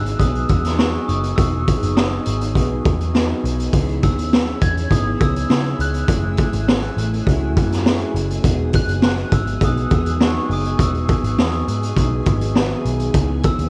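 A raw garage drum kit sits up front in this hazy, laid-back slice of indie bedroom pop, entering at 0.1 seconds with a punchy kick, high-tuned snare and hi-hat that sound saturated and gritty, with a rolled-off top. Beneath it, a vintage muted electric bass is picked with a dark, round, foam-muted tone, while a glockenspiel struck with soft plastic mallets carries the bell-like, ringing melody through analog chorus and plate reverb. In the background, an electric guitar through a small old amp adds slightly broken-up, compressed lo-fi accompaniment coated in lush chorus, vibrato and plate reverb, alongside a mellow, clean tine electric piano that plays a fill from 12.0 to 13.1 seconds. A very quiet string machine voicing violas holds soft-attack sawtooth chords with an evolving ensemble chorus. The harmony moves through Emaj7, C#m7 and F#m9 in a straight 4/4, and the recording carries the worn, warbling pitch drift of old cassette tape within a moderate room reverb, cut from a longer piece.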